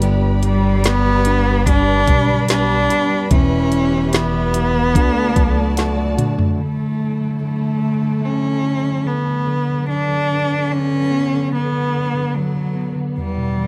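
Heartfelt and tender, this pop ballad moves at an unhurried 73 BPM in D major, taken from a longer piece. A bowed solo cello carries the melody from 0.4 seconds, its tone rich, nasal and focused with vibrato, sitting up front over a worn, slightly out-of-tune tine electric piano heard through its built-in speakers and a lush studio string section holding sustained chords with expressive portamento. In the opening half, a jumbo steel-string acoustic guitar plays fingerpicked arpeggios in the background, a thumpy pizzicato upright bass anchors the low end until 6.1 seconds, and a produced R&B drum kit with a knocking kick and woody snare sits up front. The electric piano and drums both fill toward 6.6 seconds, where the guitar and drums stop and the piece opens onto a Dadd9 chord, leaving cello, keys and strings to carry on. A small room ambience surrounds the whole.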